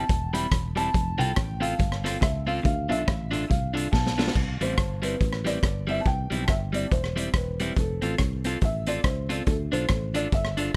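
A raw, gritty garage drum kit with a high-tuned snare sits up front in light reverb on this cheerful ska excerpt at 141 BPM in C major, where a soft, boxy felt-muted upright piano carries the melody through tape echo over a slightly broken-up electric guitar, a round, foam-muted fingered bass, and a very quiet, hollow semi-hollow guitar riff that stops at 4.1 seconds, just after a drum fill begins at 3.9 seconds.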